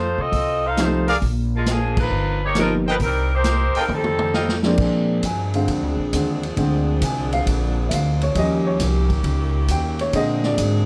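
With a swung 4/4 groove, this joyful, energetic big-band jazz clip opens with a clear saxophone section carrying the melody over woody pizzicato upright bass, a distant, roomy drum kit and a warm upright piano, while the trumpet section adds tight stabs with light vibrato, a band accent lands at 1.9 seconds, and after a drum fill the piano takes a solo from 4.8 seconds over bright, vibrato-laden sustained saxophone chords in a moderate club reverb.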